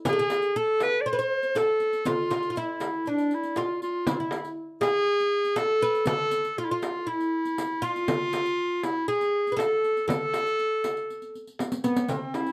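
Warm and stately, this short passage from a longer Arabic maqam ensemble piece moves at 120 BPM in a straight 4/4, set in A maqam suznak with A4 tuned to 436 Hz. A bright, smooth-topped clarinet carries the melody up front in a classical solo style, while a woody, plectrum-plucked fretless oud with doubled strings plays a second line beneath it; a small frame drum played with soft hands and a riq with bright jingles under hard hands keep the pulse. The ensemble sits in a moderate studio reverb, and a drum fill at 11.6 seconds rounds off the section.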